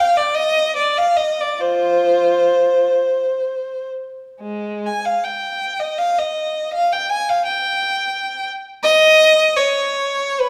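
The rhythm moves freely in a rubato 3/4, the pulse drifting between 52 and 89 BPM. This brief classical passage, cut from a longer piece, features a single unaccompanied violin playing for its full 10.5 seconds in a nostalgic, lyrical mood. The bowed line spans Ab3 to Ab5, with a rich, smooth tone and vibrato that keeps the phrasing even and expressive. The violin sits up front yet carries a slightly distant quality, wrapped in a wet reverb like that of a scoring stage, whose 1.5-second tail adds a spacious glow to every note.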